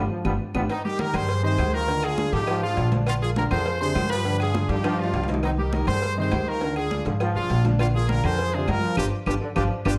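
A driving, danceable straight-feel salsa groove in 4/4, cut from a longer piece, has congas, quiet bongos and cowbell, ringing timbales and agogo bells, and woody claves entering at 0.2 s behind a growly, thumpy pizzicato upright bass up front and a polished, long-sustaining upright piano, while a distant, roomy trombone section opens with a brief mellow melody and holds a tight second line, and a brilliant, close-miked horn section with light vibrato and slapback echo takes the lead from 0.7 s, with drum fills and band accents marking the opening and close.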